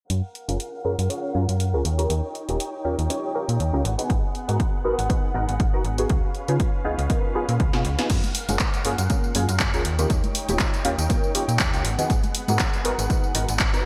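A bright 1980s-style digital production in a lush hall opens this sunny, feel-good filtered disco house excerpt at 120 BPM in F# major, where a rich, biting bowed string section holds pumping chords over a snappy, metallic FM slap bass with tube saturation, a punchy tape-warm analog drum machine with gated reverb and a drum fill at 7.7 s, a nasal, detuned polysynth comp with chorus and phaser, an up-front electronic kick entering at 4.1 s, and background tambourine and congas arriving at 8.1 s, as a filter sweep across the opening F#maj7, D#7, G#m7, C#7 progression comes to an end.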